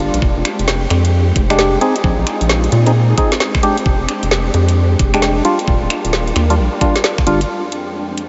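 A short cut from a longer UK garage piece opens with silky string-machine chords, a hollow organ-like stab with a filter sweep, a rubbery square-wave bass sitting up front, and a garage kit of finger snaps, metallic hats and a woody snare, all at a bouncy two-step 132 BPM with a 63% 16th-note swing. A knocking electronic kick joins at 0.2 seconds and drops out at 7.2 seconds. The mood is soulful and dreamy in F dorian, with the harmony moving through Fm69, Bb9sus4 and Ebmaj9 before returning to Fm69. The soft strings carry slow-blooming, sustained chords treated with ensemble chorus and sidechain pumping, while the mellow, percussive stabs are coloured by chorus, phaser and tape echo. The dark, resonant bass and the stabs stop at 7.4 seconds, leaving the strings and kit to ring on to 8.3 seconds inside a huge ambient reverb with a long tail and a soft, rounded top end.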